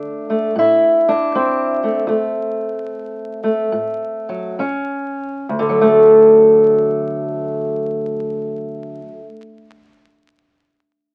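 Crackling like a very old 78 rpm record with light reverb, this rollicking, laid-back excerpt of acoustic country blues in D mixolydian features a lone fingerpicked, ladder-braced acoustic guitar, dark and boxy with old strings, sitting up front and swinging in 4/4 at 65 to 81 BPM as it slows through its opening over D5, D7 and C#sus2/D#, pausing from 2.1 to 4.6 seconds, before settling on D.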